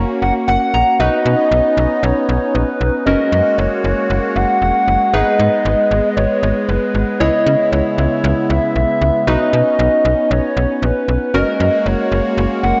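Wistful yet bright, this pop excerpt floats a hollow, woody clarinet-like synth lead with chorus and tape echo over round analog keys that open with a short fill at 0.2 s, a bold, brassy analog pad holding sustained chords, and a snappy, metallic FM bass up front, all bathed in a dreamy, lush hall reverb.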